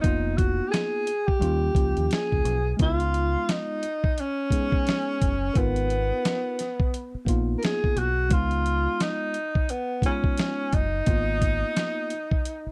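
Mellow and nocturnal, this jazz-hop cut from a longer hip hop piece moves at an unhurried 87 BPM in 4/4, with a lazy swing on the sixteenths and a G# dorian colour. A breathy tenor saxophone carries the melody up front from the start, its subtone sound soft in attack, shaded with vibrato and scooped notes, intimate and almost whispered in a jazz solo style. Beneath it, a worn, slightly out-of-tune tine electric piano supplies clean chords, moving from G#m13/E# through D#9 and C#9 to G#m69, and it drops out at 12.1 s, just before the others. A deep dub fingered electric bass sits low with a dark, round tone, while a gritty, compressed sampler-style drum kit pushes hi-hat, a thumpy kick and a fat snare to the front of the mix. The whole recording feels dry and close, like a 1970s studio session, with a brief opening passage giving way to a longer second section at 2.8 s.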